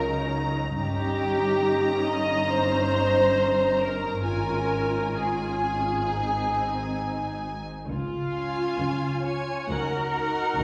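An up-front second line of muted violins stands out most in this slow, serene romantic movement for string orchestra, moving beneath a veiled, distant violin melody held high in the register. Muted violas supply a soft-attacked accompaniment, while muted cellos and a dark double bass section with light vibrato anchor the bass, every section bowed con sordino with expressive rubato. The strings sit in a reverberant recital hall in this 10.6-second passage cut from a longer piece.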